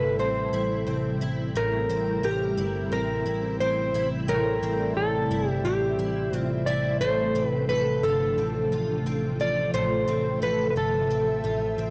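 Dream pop at 88 BPM in a straight 4/4, ethereal and melancholic, drifting through Am7, C7 and F6 in this short fragment of a longer piece. An up-front, clean electric guitar carries the melody through analog delay, over a shimmering, octave-doubled twelve-string acoustic playing arpeggios with chorus and delay, an airy pad of sustained chords with slow attack and tremolo, and a round, foam-muted vintage bass. A dark, ringing vibraphone adds delayed texture in the background until 7.3 seconds, and the whole blend sits in a moderate concert hall reverb.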